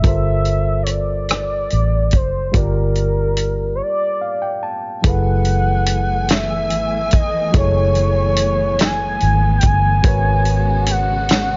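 A gliding, detuned synth lead with a soft attack, vibrato and chorus carries a yearning, late-night melody over this slow 6/8 R&B excerpt at 48 BPM, moving from Gm11 through F#m11 to G#m11. Beneath it, a gritty, overdriven reed electric piano comps through a combo amp, a dark, foam-muted fingered bass sits round and up front, and a tight acoustic soul kit adds a fat snare, punchy kick, hi-hat and rim click. The piano takes a fill in a break from 3.8 to 5.0 seconds, and at 5.0 seconds an expressive bowed string section enters with sustained chords, all in a dry, rolled-off mix.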